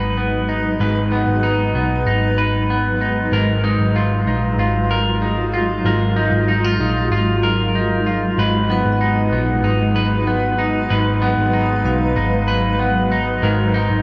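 Set in a straight 4/4 at 95 BPM, this dream pop excerpt in G# dorian drifts with an ethereal, hazy mood across 14 seconds. A vintage muted picked electric bass sits up front, its dark, foam-muted tone round and punchy, while an electric guitar at the edge of break-up plays twangy, fingered arpeggios, slightly broken-up and bathed in lush chorus and dub echo. Beneath them a granular cloud pad holds sustained chords, its blurred, evolving texture slow in attack and long in release, carried by its own built-in reverb. At 8.7 seconds a vibraphone with hard mallets enters in the background, its metallic, ringing tone showing a slow motor vibrato and trailing dub echo until 13.7 seconds. The harmony moves between G#m7 and D#madd9/G#, and the whole mix is echo-heavy, set in a moderate spring reverb with digital ambience.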